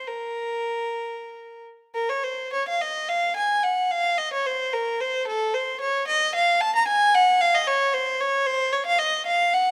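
A rubato pulse in 6/8 carries this solemn, grave fragment of a baroque-style suite movement, where a single up-front violin with a reedy gut-string tone and light vibrato plays unaccompanied in period style, caught by close, detailed microphones in light reverb as the music moves into a new section at 1.9 seconds.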